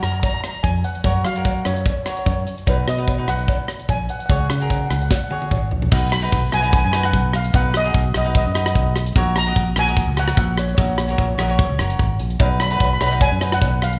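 A shimmering steel pan carries the melody from the start over crisp, picked cavaquinho, a round, punchy fingered electric bass and a tight, mid-forward drum kit, with a metallic cowbell sitting in the background from 0.2 seconds. This bouncy, sunny calypso moves at 148 BPM in F# major with a light swing, and a drum fill at 5.1 seconds leads into a second section built around B and F#/A# chords. The cowbell returns at 12.4 seconds, and the whole passage rings in a moderate recital-hall reverb as a fragment cut from a longer piece.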